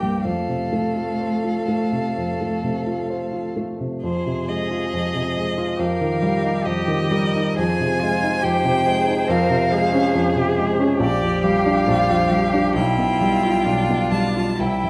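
A slow, lyrical classical movement for piano quartet opens with all four players together: a polished grand piano sits up front in accompaniment while a smooth, even solo violin carries the melody with vibrato above a second violin and a focused cello adding second lines. The serene mood darkens as the harmony turns to minor at 4.0 s. The second violin colours its line with expressive portamento, the phrasing breathes freely with rubato, and a lush recital-hall reverb surrounds this passage taken from a longer work.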